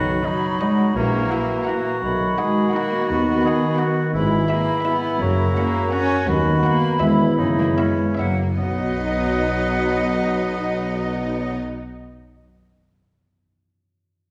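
Magical and mischievous, this playful, whimsical film cue in B major moves in a brisk 3/4 at 142-170 BPM, slowing between 5.8 and 8.6 seconds before settling onto a B chord as a brief second section begins. A rich violin section carries the melody from 0.2 seconds, with airy, bright flute, clear oboe, distant clarinet and a barely audible lush second violin section weaving secondary lines, while mellow bassoon and a very quiet viola section accompany and a background French horn section holds sustained chords. Ringing thumb-plucked harp arpeggios continue until 12.5 seconds over a dark, woody cello section, focused double basses and a roomy tuba, all set in the wet reverb of a recital hall in this excerpt from a longer piece.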